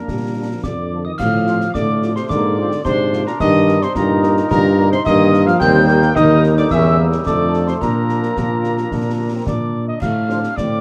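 Spirited and rousing, this short cut from a longer military-style wind band march strides along at 109 BPM in a straight 2/4 in Bb major, tuned slightly high at A4 = 441 Hz, with a distant, roomy cornet carrying the melody over a soft-attacked tuba bass placed up front. Behind them sit a background euphonium line with light vibrato, a loose trombone section with a smooth top holding sustained chords, and a warm French horn section filling out the accompaniment. Concert snare drum, bass drum and dark clash cymbals sound in a small room, while a bell-like, ringing glockenspiel played with soft plastic mallets and a pure, tongued wooden piccolo join on a high second line from 0.6 seconds, all under light reverb.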